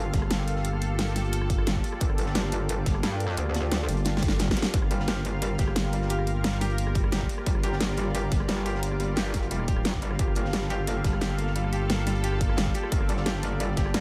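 A straight 4/4 drum-and-bass pulse at 176 BPM drives this dark, technical excerpt in G minor, built on a punchy electronic kick, a layered dubstep kit with a huge snare and rim clicks, and a very quiet, gritty breakbeat kit with a high-tuned snare, punctuated by a drum fill at 4.1 seconds. Beneath them a metallic, overdriven wobble bass and a thick, growling FM bass sit up front, the growl dropping out at 8.5 seconds and returning at 11.0, while an evolving sawtooth pad holds a Gmadd9 chord with chorus and sidechain pumping, and a blurred granular cloud pad hovers in the background. At 4.9 seconds a soft, felt-muted upright piano with audible action noise enters with delayed arpeggios, adding an intimate touch to an otherwise aggressive, mechanical mood set in a light digital ambience.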